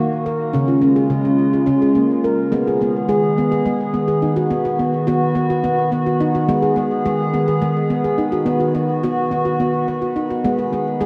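In a straight 7/8 pulse, this gentle, meditative world piece pairs a ringing nitrided-steel handpan playing sharp-stroked arpeggios through delay and shimmer reverb with a warbling, nostalgic lo-fi pad of detuned, wave-folded sustained chords carrying chorus and shimmer, both sitting up front in a lush, wet hall as the harmony moves from Ebm and Db into a section rocking between Abm and B from 2.5 seconds.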